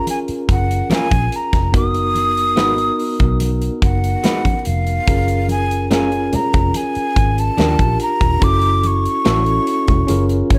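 A breathy jazz flute and a bell-like tine electric piano open this lush, smooth slice of 1970s-style soul together, the flute carrying the melody up front with a soft attack, straight tone and lifted highs while the electric piano lays down a clean, direct accompaniment beneath it. A polished modern studio drum kit joins almost at once with a tight kick, medium-tuned snare and hi-hat, alongside ringing congas tucked into the background. A vintage fingered electric bass with a dark, round, foam-muted tone enters at 0.3 seconds, and an electric guitar through a small old amp adds a slightly broken-up, lo-fi picked riff from 0.9 seconds, sitting low in the mix. The harmony drifts through F#maj7 and slash chords over an F# bass before moving to D#maj7 and settling on E13sus4. Light reverb and small room ambience surround the unhurried groove, and the passage is cut from a longer piece.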